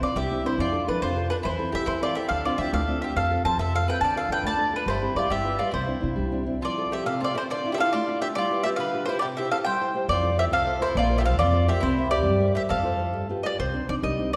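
Lively and sunny, this Italian folk serenade sways in 6/8 and is cut from a longer piece. A picked mandolin carries the melody up front, its doubled strings giving it a woody ring, while a second mandolin plays a rounder supporting line beneath it. A fingerpicked nylon-string guitar with fresh strings supplies small, warm accompaniment throughout. The pizzicato upright bass sounds dark and thumpy and sits forward in the mix. It drops out at 6.5 seconds as the music moves into its second section, and returns at 10.1 seconds. A generous, wet reverb places the ensemble in a church or concert hall, and the passage closes on a C minor add9 chord.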